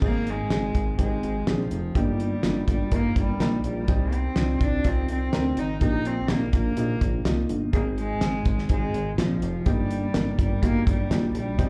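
Heard through a club PA with light reverb and the club's ambience, this anthemic, warm piano-driven pop excerpt moves in a straight 4/4 over a cycling progression from Ab through Eb/G, Cm and Eb/Bb. A dark, woody upright piano with audible action noise and a slapback echo carries the accompaniment, over a glossy, retro chorused synth bass and a damped 70s drum kit with a fat snare, tight kick and rolled-off top. From 0.1 s, a single bowed cello with a nasal, reedy gut-string tone sings the melody up front, also touched by slapback echo.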